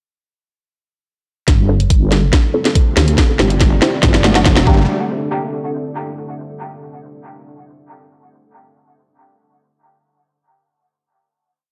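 Through a dry, gritty cassette-saturated haze, this cavernous, meditative deep dubstep piece at 141 BPM in half-time builds from 1.5 seconds with an overdriven knocking kick, a garage kit of cracking snare and hats, and a heavy detuned wobble bass with chorus, with nasal off-beat dub chord stabs under a filter sweep, phaser and dub echo arriving at 1.7 seconds. A moody sub-octave ambient pad joins at 2.3 seconds and a background riser at 2.5 seconds as the chords move from Gsus2 to Gm before the final hit at 4.9 seconds.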